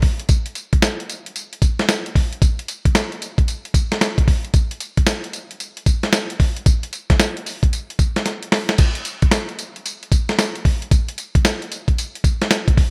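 A swung 16th-note R&B groove at 113 BPM in 4/4 bounces with confident energy on a gritty, compressed, sampler-style soul drum kit, placed up front in a bright 1980s-style digital production with light reverb, its thumpy kick, medium-tuned snare, hi-hat, tambourine and crash cymbal running through this excerpt, with a drum fill at 8.3 seconds before the groove repeats.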